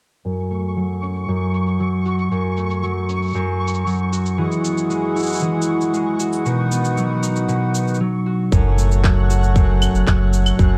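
Fingerpicked concert harp arpeggios ring up front in this intimate, autumnal folktronica excerpt at 116 BPM in F# dorian, shaped by a filter sweep and tape echo, while tape-toned electronic cabasa, handclaps and claves sit low beneath and a grainy, flickering granular texture hangs high above. A reedy, breathing hand-pumped harmonium enters with sustained chords at 4.4 s as the harmony moves from F#m through Eadd9 and B. At 8.5 s the music returns to F#m as a tight electronic kick and a deep, round sine sub bass arrive, all set in a dark, warm production with moderate studio reverb.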